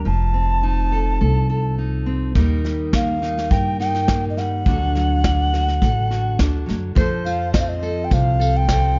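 Reflective and wistful, this short excerpt of acoustic folk moves at 104 BPM in a straight 4/4, led by a breathy, clay alto ocarina with vibrato, an unsteady tone and a soft attack sitting up front over fingerpicked steel-string guitar, where finger squeak is audible, and a woody pizzicato upright bass. Soft brush drums with a punchy kick and medium-tuned snare join at 2.4 seconds as the chords move from F7 through Ebadd9 to D. At 7.0 seconds, on an F chord, a nasal, metallic resonator slide guitar and a jingly tambourine in the background enter, all within a dark production with light reverb.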